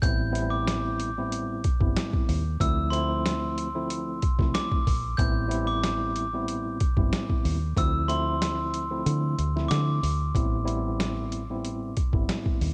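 A dry home-cassette sound frames this moody, dark boom-bap hip-hop excerpt in A minor, moving at 93 BPM in 4/4 with a 57% swing on the sixteenths. Up front, a sampler-style drum kit hits with compressed, pitched-down grit, a thumpy kick and a medium-tuned snare under hi-hat, carrying its own tape warmth, and the kick drops out between 9.1 and 10.3 seconds. Beneath it, a deep dub fingered electric bass sounds round, foam-muted and punchy, running from G1 to D3. A mellow tine electric piano, clean and heard through its built-in speakers, holds the accompaniment between D2 and E4, filtered and tape-treated, over a slow Am9 to Dm9 progression. A metallic, bell-like glockenspiel struck with brass mallets rings out a vintage, band-limited melody between C6 and G6 until 10.0 seconds, leaving the other parts to carry a short closing section that returns to Am9 at 10.3 seconds.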